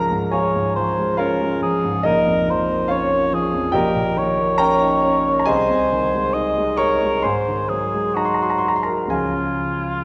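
A gently rubato 4/4 pulse opens this serene, tender romantic classical duo, with a warm, polished grand piano accompanying from the first moment across a broad range from deep bass to high treble. At 0.3 seconds a mellow cor anglais enters with the melody, its light vibrato sitting up front beside the piano as the harmony moves from Db through Bbm, Eb7/Bb, Ab/C and Ab7 before coming home to Db at 9.1 seconds. A lush concert hall reverb surrounds both instruments in this brief passage cut from a longer piece.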